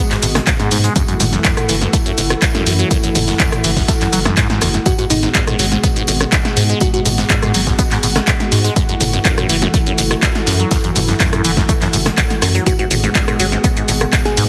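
A lush, detuned sawtooth pad and a squelchy, resonant acid bass open this driving, gritty acid house excerpt at 123 BPM in G# phrygian. The pad holds sustained chords with chorus and sidechain pumping, while the bass riff runs through phaser, tube saturation, subtle chorus and delay. A punchy analog drum machine sits up front with handclaps, rim click, shaker, toms, snare and hi-hat, backed by a very quiet acoustic indie kit adding a fat snare, hi-hat and tambourine in a pumping studio room. A deep sine sub bass, saturated and thick, pumps beneath an analog electronic kick re-recorded in a large room, as the harmony moves between G#m7 and F#m7. A bell-like, sparkling FM electric piano with chorus and digital delay enters at 4.9 seconds and returns at 12.7 seconds, all set in light digital ambience with a heavily compressed, radio-like sound.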